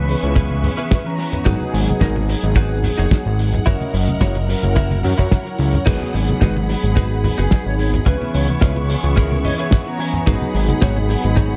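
Nu-disco at 109 BPM in G# minor, this sleek, cosmic excerpt rides a fat, detuned sawtooth analog bass and an up-front, tight, dry kick under a damped 70s kit of dark cymbals, hi-hat and medium-tuned snare, with low-tuned, thick-skinned congas sitting in the background. Round, brassy synth brass with chorus and 12-bit sampler grit carries the accompaniment, while a lush, bright bowed string section holds pumping sustained chords and a clean, picked, direct-recorded electric guitar plays a chorused riff, adding a fill at 9.2 seconds. An airy, distant concert flute with tape echo surfaces briefly at the start and again from 7.4 seconds over a progression moving through C#m7, G#m7 and F#7, all within an echo-heavy, darkened mix.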